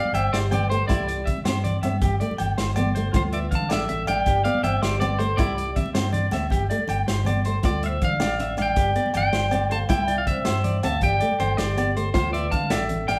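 Bathed in a wet, large-room reverb with the whole band playing live together, this joyful, sunny highlife excerpt in a straight 12/8 at 107 BPM sets a twangy, slightly broken-up picked electric guitar melody up front over a second edgy electric guitar's arpeggios, mellow soft-mallet vibraphone with its motor off, a fingerpicked flamenco guitar complete with finger squeak, a dark, round fingered electric bass, a vintage drum kit with punchy kick and rolled-off top, and thick-skinned congas and ringing agogo bells in the background, all circling a Gsus4, Cadd9, Gsus4, Dmadd9 progression.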